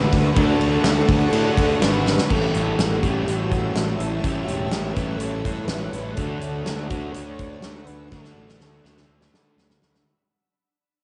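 Shoegaze and dream pop rock, hazy and blissful, where a reedy, detuned FM lead with tremolo and tape echo sings over a shimmering, ethereal pad, a warm hollow-body guitar soaked in reverse reverb, a dark fuzz guitar in the background, a growly overdriven bass and a punchy, fat-snared arena drum kit up front, all colored by cassette haze as the chords move from Dmaj9 to A7 and back, with drum fills at 2.1 and 8.1 seconds and a fade-out beginning at 2.3 seconds.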